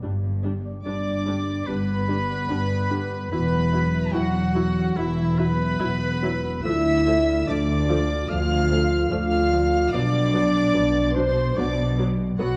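Worn, warbling cassette tape with drifting pitch and a reverberant recital hall give this cinematic fragment, cut from a longer piece, a hazy glow as it moves at a rubato 73 BPM in D dorian through G, Esus2, Dm and Bm with a hopeful, moving mood. Dark viola and double bass sections, an intimate cello section and a ringing harp playing arpeggios open together, the strings bowed sul tasto, and mellow French horns join with sustained chords at 0.8 s. At 0.9 s a distant, floating violin section takes the high melody, while an airy flute ensemble, a clear solo oboe and a very quiet chamber violin section share a second line.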